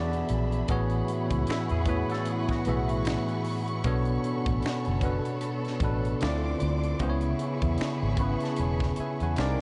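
An introspective, smooth neo-soul R&B excerpt at 76 BPM with a 16th-note swing, built on a bell-like, up-front tine electric piano and a dark, round, foam-muted fingered bass over a tight funk kit with a high-tuned snare, punchy kick, hi-hat and finger snaps. Lush, distant strings with vibrato and portamento hold sustained chords while a bright trombone section adds background stabs, and a twangy clean guitar slips in a second line from 1.5 to 3.6 seconds. The chords move from E7 through Amaj13, Bm9 and Dm7 to C#m7, the electric piano closes with a fill from 7.8 seconds, and the whole mix sits in a dreamy, cassette-dulled haze of long ambient reverb.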